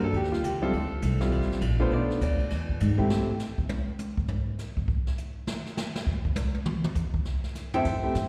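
Sophisticated, warm uptempo jazz piano trio swinging at 202 BPM in 4/4, caught live through a venue's PA in a recital hall's reverb: a deep-toned concert grand with a slapback echo leads over Eb9 and Dm11 changes, with a woody, thumpy gut-string upright bass underneath and a brushed kit with dark cymbals and a boomy kick throughout. The drums take a solo from 3.1 s, and piano and bass drop out at 3.3 s, the piano returning at 7.7 s and the bass at 7.8 s on a C chord.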